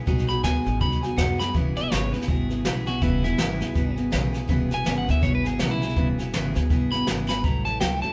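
A swung 4/4 feel drives this rollicking, rowdy rockabilly fragment, where an up-front brush kit with a boomy kick and medium-tuned snare fills at 1.4 and 7.3 seconds, a woody, thumpy pizzicato upright bass holds down the low end, a full-bodied dreadnought acoustic guitar picks out accompaniment, a twangy electric guitar through a small old amp plays a background riff, and a bright, scooped, slightly broken-up electric lead carries the melody into a clean electric guitar solo from 1.5 seconds, all captured as a band playing live in one room with light reverb.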